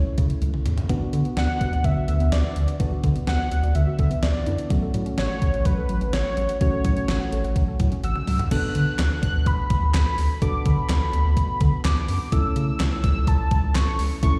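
Upbeat and bright, this synth-pop excerpt sets a velvety, detuned sawtooth lead melody with chorus and digital delay over soft, mellow electric-piano-like keys and a round, deep analog bass. A gated 80s digital drum machine sits up front with a thumpy kick, overdriven gated-reverb snare, handclaps, hi-hat, crash and toms, while a warbly, dusty lo-fi pluck plays chorused arpeggios from 0.9 to 8.5 seconds, where a drum fill leads into the second section. The whole mix sounds as if played on a big sound system in a bare room with large studio reverb.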